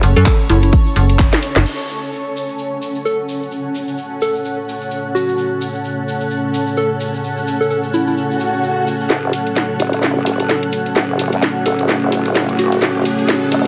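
Heavily compressed with a lush hall reverb, this bouncy, gritty bass house excerpt opens on a drop where a metallic FM bass with overdrive and a punchy electronic kick hit alongside a house drum kit of cracking snare, handclaps, hi-hat and crash, while a grainy tube shaker, a cloudy granular pad and a round, keys-like synth lead with chorus and delay run throughout; a moody analog pad with a filter sweep enters at 1.7 s, and from 9.1 s the drums return with a nasal vowel-sweep wobble bass over a background swell and riser in a build-up.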